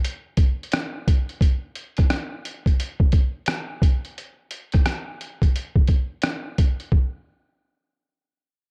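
A lazy swung sixteenth-note groove at 87 BPM in 4/4 drives this mellow, nostalgic hip hop excerpt, where a pitched-down, muffled sampler-style drum kit of thumpy kick, hi-hat and rim click sits up front with compressed, tape-warm weight, playing from the start until 7.1 seconds over a dry cassette sound.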